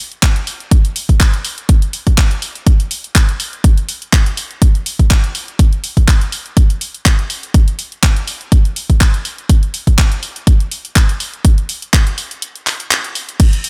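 House drum groove at 123 BPM in 4/4, with a light 55% swing on the sixteenths and an energetic yet bittersweet mood, cut from a longer track. A punchy, layered electronic kick sits up front beside a house drum kit of crash cymbal, handclaps and hi-hat; both parts are tape-warm and re-recorded in a large room, though the overall mix stays fairly dry. A short break arrives at 12.4 seconds, and the kit plays on until 13.7 seconds.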